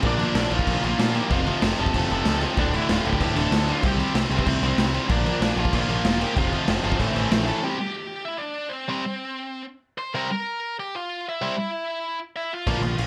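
A raw mix with light reverb opens this urgent punk rock excerpt, driving at 190 BPM in a straight 4/4 as the chords move through Bb, F, Dm and C5 toward Am and C. Up front, a garage drum kit with a punchy kick, medium-tuned snare and crash cymbal sounds gritty and saturated, its top rolled off in a bright stone room, while a growling, overdriven picked bass fills out the low end. Two tight, distorted rhythm guitars play riffs in the background, joined by a very quiet, double-tracked overdriven guitar riff that stops at 7.6 seconds. Over them, a high-gain lead guitar carries the melody with a distorted, warm tone. The feel drops to half time as the bass and drums stop around 7.5 seconds, leaving the guitars on their own until the rhythm section returns briefly at 12.7 seconds.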